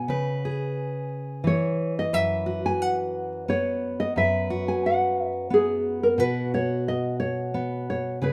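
A dark, deep-toned nylon-string guitar carries the melody, thumb-plucked and sitting up front in the mix. Beside it, a fingerpicked steel-string dreadnought guitar supplies a full-bodied, warm accompaniment that reaches down into the low register, and both parts play from the opening moment to the close at 8.3 seconds. Finger squeaks can be heard from both guitars, adding an intimate, close-up quality. This short folk fragment moves in a gentle three-beat metre with a straight feel, its mood nostalgic and tender. The harmony moves from C#m7 to F#7sus4 at 2.1 seconds and settles on Bsus2 at 6.2 seconds, all wrapped in a light reverb.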